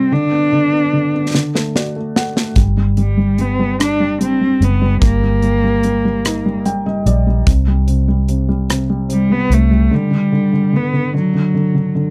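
A bowed cello with vibrato and a focused, smooth top sings a heartfelt, romantic melody over a mellow felt-muted upright piano with audible action noise in this six-eight pop ballad excerpt, joined at 1.3 seconds by a polished, airy drum kit with a punchy kick, both drums and piano playing a fill, before a dark, round, foam-muted fingered electric bass arrives at 2.6 seconds, all captured in a dry, close, 1970s-style studio sound.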